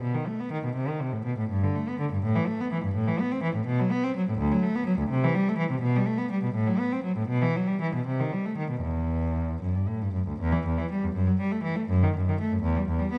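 A dark, warm production places a single cello close and up front, wrapped in a moderate scoring-stage reverb that lets its rich, bowed tone bloom. This short excerpt, cut from a longer piece, is a baroque-style suite movement for unaccompanied cello in E minor, moving in a flowing 6/8 at roughly 76-86 BPM counted in dotted quarters. The mood is solemn and flowing, with a rubato feel that lets the phrases breathe. The lone player draws a smooth, even line with vibrato, ranging from D2 in the low register up to C4. Around 10.4 seconds the music turns to a new section, which carries on until the fragment ends at 13.2 seconds.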